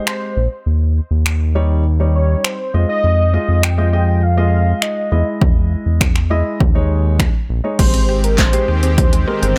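A digital ambience frames this short, carefree dance-pop excerpt in Ab major, moving at 101 BPM in a straight 4/4 with a euphoric lift. Up front, a punchy analog drum machine with a tape-warm character lays down kick, snare, handclaps, finger snaps, hi-hat and crash cymbal, a short room around the snare, clap and hats, while a round, deep analog bass enters at 0.4 seconds with sidechain pumping. Over a dark, mellow concert grand piano, also pumping, a velvety synth lead with chorus, delay and vibrato carries the melody between Bb4 and G5. The harmony moves from Abmaj7 through Eb7, Fm7 and Emaj7 to Eb7sus4 before returning to Abmaj7 at 7.8 seconds, where a woody, mallet-like synth pluck slips into the background with chorused, delayed arpeggios. A lush, detuned supersaw pad joins at 8.2 seconds, adding bright sustained chords to the closing bars.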